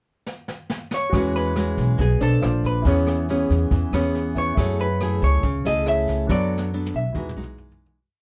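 A fingerpicked nylon-string guitar sits up front in this relaxed, romantic bossa nova piece, its thumb bass and syncopated plucked chords carrying a classical-style accompaniment. A brush drum fill enters at 0.3 seconds during a short pickup, and the band settles in at 1.1 seconds: a woody, thumpy pizzicato upright bass plays dotted root-and-fifth lines close to the listener, while a clear baby grand piano holds rootless chords with short sustain in the background. Over them a dark, clean hollow-body electric guitar picks a motif-based melody built from song-like phrases. The brushed kit, captured naturally in a small room with a boomy kick and medium-tuned snare, plays a bossa brush groove and adds another fill as the piece fades out from 6.3 seconds. Chords such as E69, F#m9 and Emaj9 colour the harmony, and light reverb rounds out a warm production.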